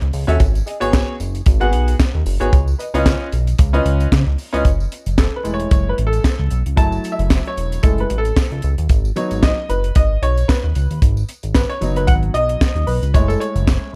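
A tight, dry funk kit with handclaps, hi-hat, a high-tuned snare and a tight kick drives this late-night, slick early-eighties boogie funk excerpt at 113 BPM with a light sixteenth swing in F# dorian, joined by a glossy, chorused synth bass with pulse-width modulation and filter sweeps, a jingly tambourine in the background, and a clear, worn grand piano bathed in plate reverb that takes a solo from 4.7 seconds over chords moving from G#m7 and C#9 to F#m7, all in a dark small-room production.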